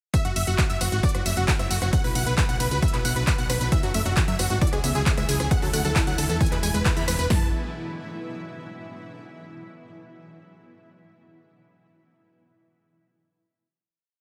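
Driving and bittersweet, this short uplifting trance piece opens straight into a drop where a huge, lush supersaw riff pumps over a pedal note in sixteenths, doubled an octave higher by a very quiet wave-folded unison pluck, while punchy overdriven big-room drums with a four-on-the-floor kick, crisp hats, claps, rim, tambourine and ride play alongside a round, rolling FM bass, a shimmering granular pad enters at 1.2 seconds, a tight detuned arpeggio joins in the background at 3.7 seconds, and after a band accent the track settles on a final F#m7 chord at 7.3 seconds.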